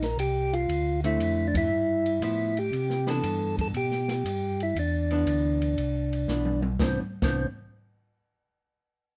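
Swinging at 118 BPM in 4/4, this bluesy, soulful soul jazz organ trio excerpt in C major sets a round percussive tonewheel organ melody with slow rotary speaker over a mellow tonewheel organ bass line colored by chorus vibrato and slow rotary, while an open jazz drum kit with dark cymbals and a boomy kick plays a fill from 6.3 to 6.8 seconds, a clean, hollow-body archtop guitar adds picked accompaniment from 1.0 second, and the whole band hits an accent at 1.5 seconds in a live room with light reverb.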